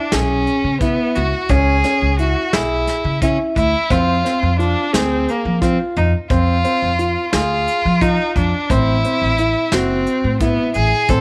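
Set in an uneven 7/8 at 175 BPM counted in eighths, with a straight feel, this tense, brooding progressive instrumental is a short cut from a longer piece, tuned to A4 = 438 Hz. Entering together at 0.1 s, a soft acoustic drum kit played with brushes carries the pulse on hi-hat, a punchy kick and a medium-tuned snare, alongside a woody, up-front upright bass played pizzicato on steel strings. A dark, mellow grand piano spins arpeggios through a slapback echo, while a single bowed violin sings the melody with a rich, focused tone and vibrato. The harmony moves from C#m to Fm at 3.9 s and on to Am at 8.7 s, deepening the shadowy mood. Light reverb and a small-room ambience keep the band sounding close and intimate throughout the 11.2-second passage.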